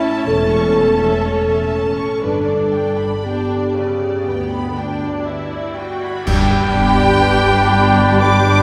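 Set in a wet church reverb, this tender, moving cinematic orchestral excerpt drifts rubato at 60 BPM in G lydian, with lush vibrato violins carrying the melody and a second line over a dark, vintage piano, distant viola section, roomy French horn chords and bowed cello and double bass, as cymbal swell, clash cymbals and concert bass drum enter at 2.2 seconds and a hollow flute section, mellow cor anglais and clear clarinet join with a band accent at 6.3 seconds.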